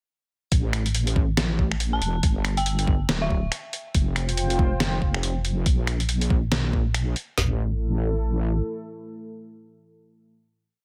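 A wobbling, heavy bass and two up-front drum kits open this cavernous, dark deep dubstep piece at 0.5 s, driving a half-time feel at 140 BPM in A phrygian with a swung sixteenth pulse. The garage kit brings an overdriven, knocking kick, a woody snare and toms, layered with a gritty, pitched-down sampler-style kit of finger snaps, closed hi-hat and a tape-tinged snare. Beneath them the saturated, detuned sawtooth bass plays long gliding notes low in the register. From 1.9 s an eerie, inharmonic FM bell adds short answering phrases with chorus and dub echo, and a deep, moody analog pad with a sub octave and slow attack enters with sustained chords at 3.9 s. The drop moves through A5, G5 and F5 chords before a bare stretch and a return to A5 at 7.4 s, where the drums fall away and the pad, joined briefly by the bass, carries the final chord in a digital ambience.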